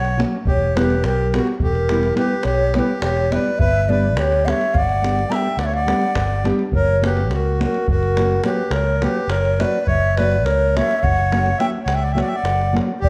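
Driven by a straight 11/8 pulse, this fiery, virtuosic Balkan wedding-band piece, cut from a longer work, sets a breathy, hollow ney melody with vibrato and a soft attack against a reedy, close-miked accordion second line touched by slapback echo. Underneath, a growly, up-front fingered electric bass and a tight davul hold the groove while a dark, thumb-plucked nylon-string guitar accompanies from 0.2 s. Everything sits in a moderate recital hall reverb as the harmony moves from Em to G and then F#.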